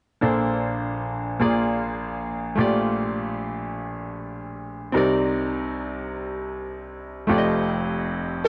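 A slow, reverent 6/8 sway at 51 beats per minute, counted in dotted quarters with a straight feel, carries this short gospel passage in Bb major, cut from a longer piece. A bright grand piano supplies the accompaniment from 0.2 to 8.5 seconds, spanning F1 to Eb5, its tone brilliant and natural with a short sustain, placed up front. The harmony moves soulfully through Bbmaj9 and Bb7 to Gm9/Bb, reaching Cm9 at 4.9 seconds and arriving at F9 at 7.3 seconds. Light reverb surrounds the playing, and the overall production is dark and warm, rolled off above 10.5 kHz. The instrument is tuned slightly low, with A4 at 436 Hz.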